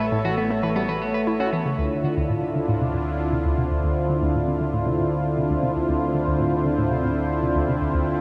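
Hypnotic and cosmic, this excerpt of ambient, sequencer-driven space music moves at 117 BPM in a straight 4/4 in D minor, bathed in a huge, wet reverb with a dark top end. A bright, up-front sawtooth pad holds resonant, sweeping chords with chorus over a mellow analog drone bass, while a hollow, bouncy square-wave pluck, detuned and treated with chorus, phaser and delay, drives the riff throughout. A clean, picked electric guitar plays delayed arpeggios only until 1.6 s, the harmony moves from A onto Dmadd9 at 1.8 s, and at 2.9 s a bubbling texture of random filter steps drifts in the background.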